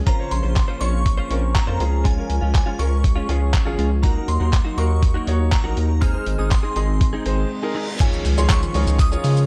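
A muffled, thumpy lo-fi sampler-style drum kit sits up front in this carefree, euphoric dance-pop excerpt at 121 BPM in Db major, its pitched-down, compressed kick, hi-hat, shaker, handclaps and crash carrying a tape-warm character. A round, deep analog bass enters at 0.3 seconds and also sits forward, pumping with sidechain, while a clear concert grand piano with open low end and a retro chorused pulse-width pad in the background pump along beneath the chords Bbmadd9, Db, Ebm and Ab. Above them a bright, dreamy FM bell carries the melody through ensemble chorus and tape echo, and a direct-recorded clean electric guitar plays a picked riff until 7.9 seconds. A faint electronic reverse cymbal rises from 7.4 seconds through a brief break that opens at 7.5 seconds, leading into an impact at 8.0 seconds, where a new section lands on Dbadd9; at 8.5 seconds a very quiet, hollow, vintage group handclap appears. 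The production is dark and dry, with little reverb.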